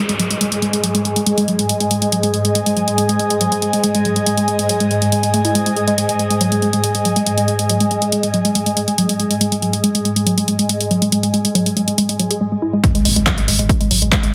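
Heavily compressed and radio-like, with a moderate digital room reverb, this cut from a longer piece of driving peak-time techno at 140 BPM, tuned to A4 = 438 Hz, feels intense and relentless. A dark, woody, wave-folded pluck riff with chorus, digital delay and sidechain pumping rides over a swarming, detuned granular drone, an airy, breathy pad with chorus and phaser, a punchy analog drum machine of handclaps and hi-hats, and an opening downlifter. The pad stops at 12.4 seconds, and at 12.8 seconds the drop arrives with an impact and a dry electronic kick that shares the drum machine's overdrive, followed a moment later by a thick, saturated, low-pass-filtered sub bass on G#1.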